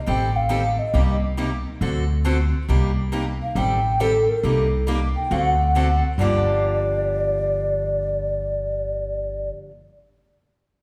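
A wet recital-hall reverb surrounds this short cut from a longer piece of acoustic string swing in the jazz manouche style, set in G minor at 137 BPM with swung eighths and a fiery, swinging mood. Up front, a clay ocarina carries the melody with an airy, hollow tone, tongued notes, vibrato and lifted highs. Beneath it, a picked steel-string parlour guitar plays the accompaniment, bright and boxy, with audible finger squeak. Also up front, the upright bass is plucked, woody and growly, with a thumpy low end. The harmony cycles through Am7b5, Cm7 and D7 before settling on Gm7 as a new section begins at 6.2 seconds, and the guitar rings on until 9.7 seconds.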